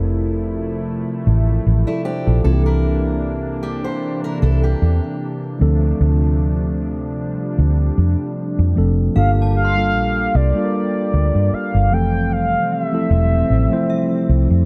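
Contemporary R&B at 76 BPM in 4/4 with a light sixteenth-note swing, this short excerpt from a longer piece sits in G dorian and carries a moody, longing feel. A mellow tine electric piano and a smooth, warbling analog pad with lush chorus hold the chords throughout, while a dark, round, foam-muted fingered bass sits punchy and up front underneath. Between 1.9 and 5.6 seconds a fingerpicked steel-string acoustic guitar with fresh strings adds delayed arpeggios. At 9.2 seconds a horn-like sawtooth synth lead with a soft attack, vibrato, filter sweep, chorus and delay takes the melody up front, joined by a faint, inharmonic FM chime ringing in the background with ensemble chorus and delay. The harmony moves through Fmaj7, C9 and Dm7 before settling on Gm9 and returning to Fmaj7, all in a dark, dry production with little reverb.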